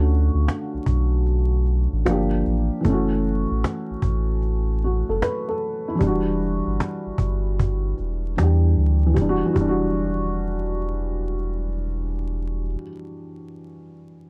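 A dark, woody upright piano with audible action noise and a slightly detuned, cassette-softened, low-pass tone carries this melancholic, hazy lo-fi hip hop excerpt at 76 BPM with a swung 16th-note feel in E dorian, over a deep, round sine sub bass and a snappy, hard-handed cajon with 12-bit sampler grit that stops at 9.8 seconds, all wrapped in light reverb and vinyl crackle.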